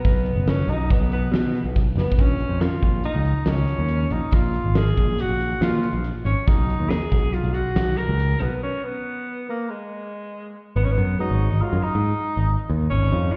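Driving and intricate, this progressive instrumental passage moves in an uneven 5/4. A clear, distant tenor saxophone plays a jazz-style solo with light vibrato and delay over a bright, direct picked electric bass sitting up front, while a huge arena drum kit with a fat snare and punchy kick adds a fill at 2.0 s before dropping out at 8.5 s for a break. A mellow tonewheel organ with key click and a slow rotary speaker slips in at 11.2 s, and the whole mix sounds muffled, as if heard through a wall, with stone-room reverb.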